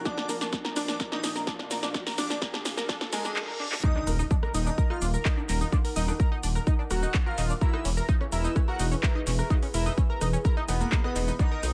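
A punchy, up-front electronic kick drives this dramatic, driving melodic techno in Eb harmonic minor at 127 BPM, joined by an overdriven deep house kit with metallic hats, a tight, nasal sequenced synth arpeggio, a fat detuned analog lead with lush chorus, dub echo and sidechain pumping alongside an airy, dreamy second line, a moody phased pad in the background, a blurred granular cloud that ends at 3.4 s, very quiet risers, a reverse cymbal and an impact, and, after the drop at 3.8 s, a deep, rumbling detuned saw bass entering at 4.1 s, within an echo-heavy mix with light reverb.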